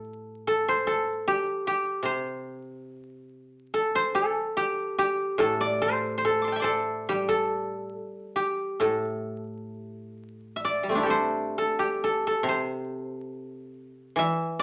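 Heard through a vinyl crackle and a moderate studio reverb, this brief cut from a longer Chinese traditional piece features a solo guzheng, mellow and silvery, plucked with fingerpicks and ringing up front across a span from A2 to D6. It moves in a rubato 4/4 around 64-75 BPM in the A yu mode with an elegant, contemplative mood, passing into a new section at 10.6 seconds.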